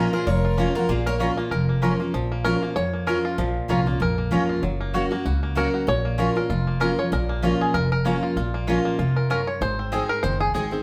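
A twangy, percussive five-string banjo, played with fingerpicks and set up front, carries the melody throughout this short bluegrass excerpt and takes a solo from 2.1 seconds to the end. The tune moves at a brisk 193 BPM in 4/4 with a swung eighth-note feel, sitting in Bb minor with a lonesome, rustic mood, and the chords pass from Bb minor through Gb and back before landing on Ab. In the opening second, a jumbo picked steel-string guitar, up front and treated with plate reverb, states a brief melodic phrase while a clear, focused fiddle with light vibrato adds a second line in the background. Underneath, a bright, full-bodied dreadnought guitar provides picked accompaniment, a woody double-strung mandolin plays stabs, and a pizzicato upright bass anchors the low end. The band is heard from further back in a moderate studio room.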